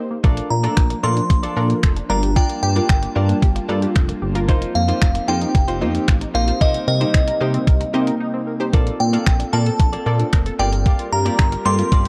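Summery and upbeat, this dance-pop excerpt moves at 113 BPM in a straight 4/4 in Bb major, cycling through Bbmaj7, Gm7, F7sus4 and Cm7 chords. A crisp 8-bit drum machine sits up front with a thumpy kick, hi-hat and finger snaps, while a chorused synth bass built from pulse and sawtooth waves gives a glossy, retro low end that pumps against the kick. A round analog pluck and a tight, driving sequenced arpeggio fill the middle, the arpeggio tucked in the background with tape echo, and an airy, breathy pad holds sustained chords behind them. A clean electric guitar recorded direct plays a compressed, picked riff with subtle chorus. Entering at 0.5 seconds, a glassy, crystalline FM bell carries the melody high above with tape echo, and a brief break at 8.2 seconds interrupts the groove before the progression returns. The whole mix has a dry, gritty hardware character with a cassette-tape tint.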